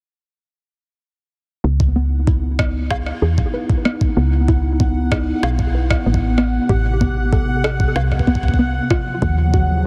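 A cerebral, eerie IDM passage cut from a longer piece opens at 1.6 seconds with a dusty, detuned pluck playing arpeggios over a round, mellow FM bass that sits up front with a woody, fast-decaying tone. A gritty, pitched-up sampler kick joins almost at once, carrying the roomy thump of a large space, and a nostalgic tape-like pad of dark, warbling chords drifts in behind with a slow attack and long release, softened by chorus and its own reverb. Set at 95 BPM in a straight 4/4, the harmony moves from C#m9 to Am9 and then D#m9, while a quieter electronic rim click and snare adds an overdriven, delayed crack with a small-room character. From 4.2 seconds a faint, bright texture bubbles through random filter steps on a resonant sawtooth, sustained and chorused high above the rest. The pluck's lo-fi tape echo and the light digital ambience sit inside a dense, heavily limited modern master.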